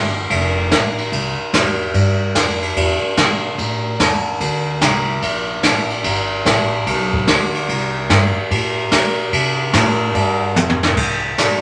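A swung eighth-note groove in four drives this cheerful, down-home slice of country western swing, cut from a longer piece. The upright bass opens the clip at 0.0 seconds, plucked on gut strings with a woody, thumpy tone that sits low in the mix. A brush-played jazz kit joins at 0.3 seconds, sounding roomy and up front, with dark cymbals across crash, hi-hat and ride, a medium-tuned snare, a boomy kick and toms. The drums close the passage with a fill at 10.6 seconds, just before the clip ends. A moderate studio reverb gives the duo a live-in-the-room feel.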